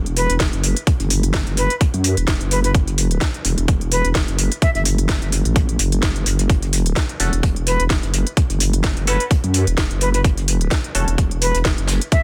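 A dense, heavily limited small-room mix carries this bouncy, aggressive bass house excerpt at 128 BPM in F# minor, where a nasal, saturated vowel-sweep wobble bass with chorus and sidechain pumping sits up front beside a tight electronic kick, a garage kit of cracking snare and crisp hats, and a very quiet brushed jazz kit, while a reedy silver concert flute with vibrato and digital delay carries the melody, pausing after 4.8 seconds before returning at 7.7, and a band-passed sawtooth chord stab with phaser enters at 7.2 seconds.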